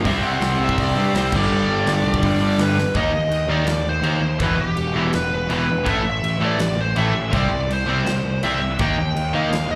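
A crunchy overdriven guitar opens this rowdy, energetic punk rock excerpt, picking a riff up front alongside a tighter distorted guitar sitting in the background, both carrying slapback echo. Within the first moments a fuzz-laden electric bass joins with a growly, amped tone, together with a big, airy rock drum kit built on a punchy kick, a medium-tuned snare, hi-hat and crash cymbal. A bluesy lead guitar with a warm, distorted edge plays a melody above the riffs, also treated with slapback echo. At 164 BPM in a straight 4/4, the band moves through power chords and simple triads such as C5, G, Em and A5, and a drum fill at 2.8 seconds leads into a half-time section from 3.0 seconds. The whole performance sounds like a live gig in a small club, heard through the venue's PA with reverb from the room.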